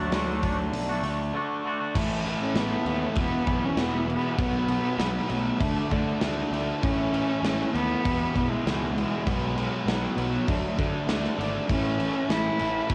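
Anthemic and cathartic, this quiet-loud alternative rock piece at 99 BPM in 4/4 sets a dark, woody bowed cello melody with vibrato, heard at a distance, over a cranked stack guitar's bright overdriven riff, a fuzzy, punchy picked bass and an up-front big-room rock drum kit with a medium-tuned snare. A clean, twangy fingered electric guitar plays spring-reverbed arpeggios until 2.0 s, when a sludgy distorted guitar riff joins in the background and barely audible vintage string-machine violas hold soft, mellow chords, all in a dry home cassette recording.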